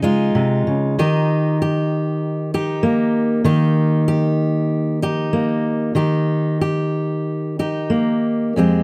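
A fingerpicked steel-string dreadnought acoustic guitar carries this brief folk passage entirely on its own, sitting up front with a warm, close and detailed presence. The mood is melancholic and intimate, with the playing moving freely in rubato around a tempo of 95 BPM in 4/4. The guitar covers a range from F2 up to G4, opening on a Dbadd9 chord before moving to Eb at 1.0 seconds. The room adds little reverb, so the sound stays dry and personal. Cut from a longer piece, the fragment lasts about 8.8 seconds.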